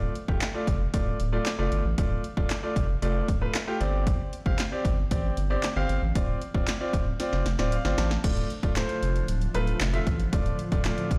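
Dance-pop at 115 BPM in D minor, confident and energetic, this excerpt is driven by a punchy, tape-toned analog drum machine with kick, snare, handclaps, hi-hat and crash, over a deep, saturated sine sub bass and a clear, polished baby grand piano providing accompaniment. The bass and piano both pump with the sidechain, and a drum fill at 7.2 seconds, joined by a short piano fill, leads into a new section. At 8.5 seconds a glassy, ethereal FM pad with a slow attack and ensemble chorus fades in behind them, all heard through light reverb, as if played over a big sound system in a bare stone room.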